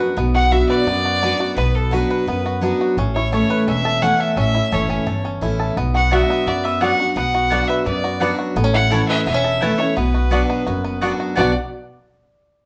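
A live band sound fills a large studio, caught in one room with a moderate reverb that gives the players a natural sense of space. This fast, lonesome bluegrass fragment in B minor runs at 172 BPM in a straight 4/4, cut from a longer piece and rocking between B minor and A. A twangy, percussive fingerpicked banjo opens the melody, soon joined by a clear, biting fiddle up front with light vibrato, while a metallic, nasal slide line on lap resonator guitar sits in the background as a second voice. Underneath, a bright, full-bodied picked acoustic guitar and a woody, thumpy pizzicato upright bass hold the accompaniment. At 6.1 s a double-strung mandolin enters with picked stabs, thickening the haunting drive through to the close.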